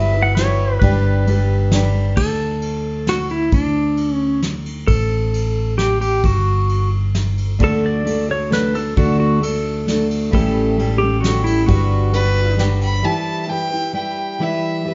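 Acoustic folk with a hopeful, pastoral mood, this excerpt moves at 132 BPM in a straight 3/4, led by a clean, up-front pedal steel guitar carrying the melody with slide and volume swells over a shimmering, octave-doubled twelve-string acoustic guitar whose finger squeaks come through, a dark, round fingered electric bass, and a soft brush drum kit with a punchy kick and medium-tuned snare. The twelve-string drops out after 2.2 seconds and returns at 7.6 seconds, while chords move from Emadd9/G through D, A7 and Gmaj7 before settling on Em. An earthy fiddle with light vibrato enters at 12.1 seconds and takes a solo from 13.0 seconds. The whole recording is heard from further back in the room through moderate studio reverb and a rolled-off top end.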